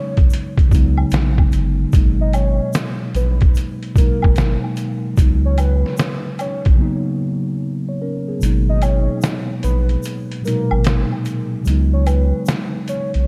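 Hazy and nostalgic, this short cut from a longer lo-fi hip hop piece sits in light reverb, with the drums carrying a gritty, 12-bit sampler texture. A trip hop sampler-style kit sets a swung 74 BPM groove in 4/4 in G# minor. Its compressed, pitched-down hits pair a thumpy kick and a medium-tuned snare with hi-hat, re-recorded in a large room yet kept up front. Beneath them, a deep, thick, saturated sub bass holds sustained low notes. A mellow, clean tine electric piano with a cassette-tape tint comps through chords built on G#m9 and C#7sus4. Above it, a warbling, dark lead with chorus, vibrato and analog delay carries the detuned melody. A close, dry tube shaker and woodblock add quiet detail, a break arrives at 6.8 seconds, and from 8.4 seconds the groove continues with the kick muted.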